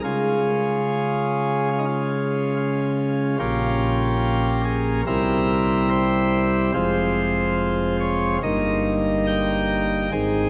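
Rubato at around 71 BPM in 4/4, this dark, solemn chorale-style classical passage is cut from a longer piece and played by a solo chamber organ on a full principal chorus, its chiffy attack sitting up front across a range from F1 to G5. The harmony moves through Db, Bbm, C7, Fm and Eb/G over about 10.5 seconds. A wet cathedral reverb with a 4.7-second tail lets each chord linger.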